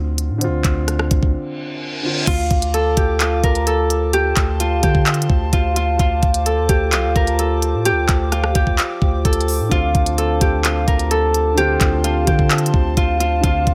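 A bright, ringing Celtic harp carries the melody in this melancholic, dark trap excerpt, entering at 2.3 seconds up front over a half-time groove. Before it arrives, a dark, mellow baby grand piano with long sustain opens a short break on a Dm7 chord alongside a deep, sine-toned 808-style bass whose long notes decay underneath, and a reverse cymbal leads into the main section. The electronic trap kit sits up front with a knocking kick, crisp hats, handclaps, rim clicks and crash cymbal. Behind the harp, a moody, nasal analog pad with a slow attack and subtle chorus holds sustained chords in the background, while the piano returns at 9.7 seconds. A light reverb gives the whole a touch of space.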